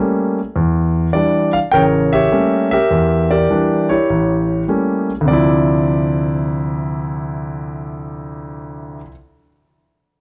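Cool and smoky, this is a short stretch of solo jazz cut from a longer performance, played with a relaxed swing in 4/4. A warm concert grand piano carries everything on its own from 0.0 to 9.1 s, ranging from a deep bass low in the keyboard up to G5. The tone is intimate and polished, sitting up front with a long sustain and the sound of the instrument's action audible beneath the notes. The opening passage circles through a dark, tense altered dominant and its minor partners, then settles onto a rich minor ninth chord at 5.3 s as a new section begins. The recording feels dry and close in the manner of a 1970s studio, with just a touch of small-room reverb around the piano.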